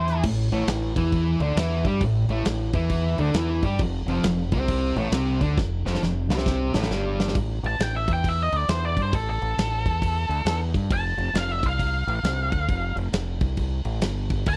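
A double-tracked, bright fuzz guitar riff opens this brooding, heavy blues rock and southern rock excerpt together with a growling fingered bass with punchy overdrive and a big rock drum kit with a tight kick, medium-tuned snare, hi-hat and crash. The band settles into a swung groove in 4/4, with the riff moving between A5 and F5 power chords. A drum fill arrives at 5.6 seconds, and the riff guitar drops out at 7.4 seconds. From 7.7 seconds, an octave-fuzz lead guitar with a dark, distorted tone and slapback echo takes a solo over the same chord movement, carried by the bass and drums. The drums sound mid-forward with a rolled-off top and a big-room character. The whole trio sits up front in a dry, close, 1970s-style studio recording with small room ambience.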